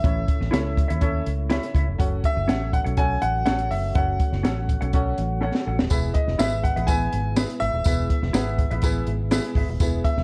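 Danceable and warm, this excerpt of uptempo 1960s-style soul moves at 123 BPM in a straight 4/4, passing from A to F#m and then E in E major. A compact cocktail drum kit with a punchy kick and high-tuned snare sits up front beside a round, foam-muted electric bass, while an intimate grand piano with audible action noise carries a high melody over baby grand accompaniment and a very quiet tonewheel organ with key click and slow rotary speaker. Clean, compressed electric guitar stabs run from 0.5 to 9.7 seconds, and after a drum fill a jingly, band-limited tambourine joins at 5.9 seconds, all set in light studio reverb with a dark production.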